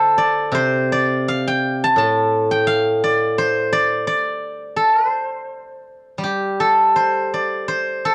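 Rubato and flexible around 84 BPM in 2/4, this elegant, pastoral fragment of traditional Chinese solo plucked strings, cut from a longer piece, features a steel-string zither played up front with fingerpicks, its silvery, ringing tone spanning A2 to A5 in C zhi mode and turning to a new section at 6.2 seconds, all heard through light reverb and the warbly pitch drift of worn old cassette tape.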